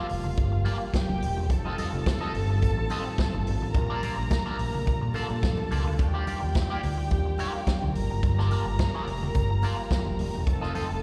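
The overdriven fingered electric bass stands out most, punchy and up front in the mix as it drives this danceable disco groove in G minor at 107 BPM, a short cut from a longer piece. A vintage acoustic drum kit with a punchy kick, medium-tuned snare and hi-hat sits close beside it, its sound natural with a rolled-off top. Above them, a dark, lush studio string section carries a second line with vibrato and a woody, smooth-topped tone touched by slapback echo, while a mellow, round tonewheel organ holds sustained chords through chorus vibrato and a slow rotary speaker. A twangy electric guitar at the edge of break-up supplies accompaniment through a wah, with a warbly pitch drift and slapback echo, and bright, thin-skinned congas played with soft hands tick along in the background from 0.3 seconds. The chords move from Gm9 through F7, Bbmaj7 and Ebmaj9 before returning to Gm9, all heard as a live gig through the venue's PA with small room ambience and recital hall reverb.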